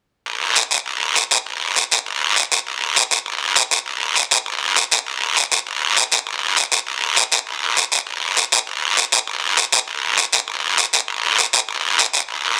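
Driving and passionate, this latin excerpt moves at a brisk 200 BPM in a straight 4/4 feel. A lone guiro carries the whole excerpt from 0.3 seconds to 12.6 seconds, its raspy, acoustic sound sitting close, dry and up front. The production leans dark, with a light reverb around the recording. A first section runs until 9.9 seconds, when a second section takes over and carries on until the clip is cut from the longer piece at 12.6 seconds.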